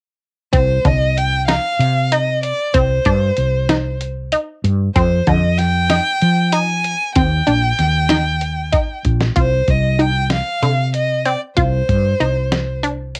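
This dry, home-recorded cassette piece has a close sound, and it is cut from a longer progressive instrumental in an uneven 7/8 with a tense, brooding mood. From 0.5 seconds a bowed violin carries the melody up front, its rich tone shaped by vibrato, portamento and a soft attack for an expressive, single-player voice. Beneath it, a squelchy, detuned sawtooth blip pluck with ring modulation, a noise layer and a phaser plays bright, resonant arpeggios with a fast attack and short decay, also taped to cassette. A woody fretless electric bass sits forward with a growly, round, hollow-body character, while a muffled, compressed sampler-style kit supplies a thumpy kick, fat snare and hi-hat. The harmony moves from Cm through Fm7 and Ebmaj7, and a drum fill at 9.1 seconds leads back to Cm for a new section, where the violin drops out at 12.8 seconds as the other parts carry on briefly.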